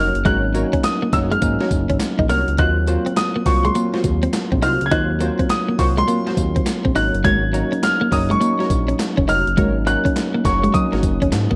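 R&B new jack swing with a bouncy, slick, swung sixteenth-note feel, cut from a longer piece, where an intimate grand piano carries the melody high above a worn, slightly out-of-tune tine electric piano, a compressed clean guitar riff through analog chorus, punchy polysynth stabs, a mellow gliding synth bass and an up-front, overdriven 80s drum machine of thumpy kick, gated-reverb snare, handclaps, hi-hat and tambourine, all in a dark, warm production with light reverb.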